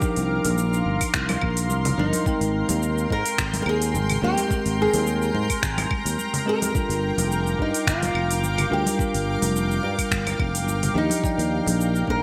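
A fingerpicked nylon-string guitar melody opens this wistful, smooth sunset chillout excerpt at 107 BPM with a light sixteenth-note swing, over bell-like tine electric piano touched with digital delay like the guitar and a shimmering, ethereal detuned pad with chorus, while a soft, tape-warm electronic kick sits in studio reverb and a produced R&B kit of metallic hi-hat, claves, finger snaps and shaker sits in studio and gated reverb, a growly fretless bass joins at 0.2 seconds and very quiet vintage congas at 0.5 seconds, all moving through Cm11, Abmaj9, Gm7 and Ebmaj9 in a bright 1980s-style digital production with moderate plate reverb.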